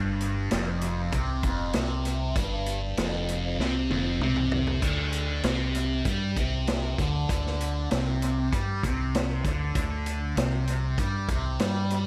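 Psychedelic rock at 98 BPM in a straight 4/4, this hypnotic, hazy excerpt from a longer piece pairs a thick, double-tracked fuzz guitar riff, bright and up front with distortion and phaser, against a deep, round dub bass played with the fingers, moving from Fsus2 to Csus2 at 4.8 seconds. A vintage acoustic drum kit with dark cymbals, a punchy kick and a rolled-off top enters at 0.2 seconds, soaked in dub echo, and plays a fill from 3.6 to 4.8 seconds. The echo-heavy mix sits in a small room ambience.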